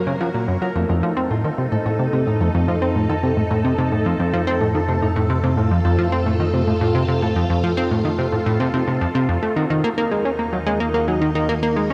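Ambient, sequencer-driven space music at 109 BPM in 4/4 with a mysterious, cosmic mood, this excerpt sets a punchy, funky plucky analog bass riff up front over a nasal, detuned analog drone, swirling, warbling phased string machine chords and a fingerpicked, ringing concert harp with analog delay in the background, all in a huge ambient reverb as the chords move from Gbmaj7 through F7 to Ebmadd9 at 9.6 seconds.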